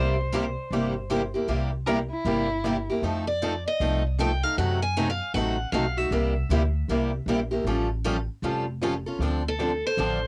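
Charming, lively acoustic string swing in the jazz manouche style opens at once with a picked steel-string guitar melody carrying tape echo over two more picked guitars and a woody, thumpy gut-string upright bass played pizzicato, with the lead guitar, the second steel-string guitar and the bass sitting up front. The steel-string parlour guitars sound boxy with audible finger squeak, one bright with fresh strings and the other warm, while the swing-style guitar has a darker, woody tone from old strings. From 1.9 to 2.8 seconds a dark, expressive bowed violin adds a brief second line with vibrato and portamento, all in a snug booth ambience with the homely character of a cassette recording cut from a longer piece.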